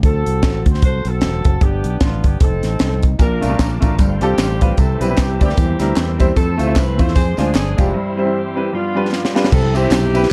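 Uptempo gospel in C major at 152 BPM, this soulful, jubilant excerpt swings its eighth notes over a 4/4 pulse, cut from a longer piece. A distant, roomy horn section carries the melody from the start, joined by a round, punchy fingered electric bass and a crisp, up-front fusion drum kit with a high-tuned snare and tight kick. At 3.2 seconds the band fills out: a bright, brilliant baby grand piano takes up accompaniment, a very quiet tonewheel organ with key click and fast rotary speaker holds chords alongside a hushed, reedy string section, and tambourine, maracas and group handclaps sit in the background. The harmony moves briskly through rich seventh, ninth and suspended chords before a break at 7.9 seconds, capped by a short drum fill that lands on C at 9.5 seconds. The production is dark and dry, with the drums, bass and piano close and present against the more distant horns.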